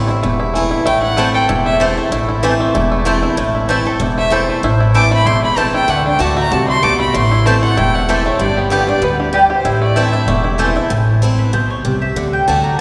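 Bathed in a cavernous church reverb, this driving, lonesome bluegrass excerpt in A dorian swings along at 191 BPM over chords moving between Am, D and G. A thumpy pizzicato upright bass sits up front beneath a boxy, bright picked swing guitar and twangy fingerpicked banjo arpeggios, while a dark, close fiddle carries the melody with light vibrato and portamento and a double-strung mandolin adds stabs. The banjo drops out at 10.9 seconds as the mandolin takes a short solo until the excerpt ends at 12.8 seconds.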